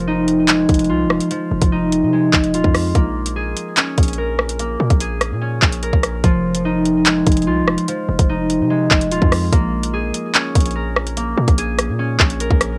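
A lo-fi home cassette recording with light reverb opens on a bright, ringing concert harp and a heavy, punchy 808-style sine bass together, the harp fingerpicked in up-front arpeggios and colored by a low-pass filter, tape grain and analog delay as it moves between Fm7 and Bbm7. This cold, tense drill cut in F minor runs at 146 BPM with a half-time feel, carried by that bass with its noise layer, fast attack and decaying tail. An electronic drill kit enters at 0.3 seconds, sitting loudest in the mix with a hard-clipped kick, metallic hi-hats, handclaps and rim clicks under a tape-saturated sheen.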